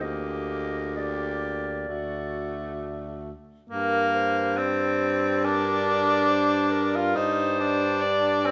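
A rubato 4/4 pulse at 64-70 BPM carries this melancholic, yearning classical excerpt for single-reed quartet in G minor, where a mellow, distant clarinet sings the melody in the background over a clear, close-miked alto saxophone second line, a soft-attacked tenor saxophone with light vibrato sitting up front as accompaniment, and a punchy, warm baritone saxophone bass, heard inside a wet recital hall reverb as the harmony moves from Gm/D through D and Gm to D5/G at 7.2 s.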